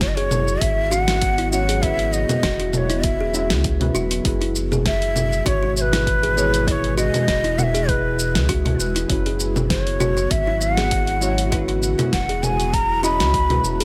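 Peaceful and warm, this organic downtempo excerpt moves at 99 BPM in 4/4 with a light 16th-note swing, resting on a single F#7sus4 chord, cut from a longer piece. Up front, a breathy, hollow bamboo bansuri carries the melody with vibrato through tape echo, over woody kalimba arpeggios with delay, a deep, mellow chord stab with chorus, delay and sidechain pumping, and an ethereal pad with ensemble chorus that enters at 0.2 seconds. A round, dark analog bass pumps underneath, while a deep house kit of congas, hi-hat, shaker and fat snare plays alongside an electronic kick that stops at 13.5 seconds, all within a light digital ambience.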